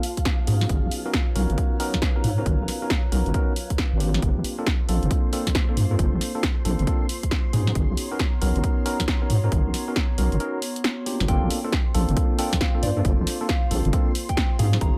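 UK garage in a two-step style at 136 BPM, soulful and late-night, with a swung groove built on an overdriven, punchy electronic kick and a tape-warm analog drum machine supplying hi-hat and snare, while a deep, dark wobble bass sits up front with sidechain pumping. Silky string-machine chords and a warbling, nostalgic lo-fi pad drift in the background, both pumping under chorus, as clean tine electric piano stabs carry dub echo over Abm11 and Gm11 chords. After a short break at 10.4 seconds, the drop at 11.3 seconds brings in a soft, pure FM synth bell melody, mellow with chorus, phaser and dub echo, before this excerpt cuts off at 15.0 seconds.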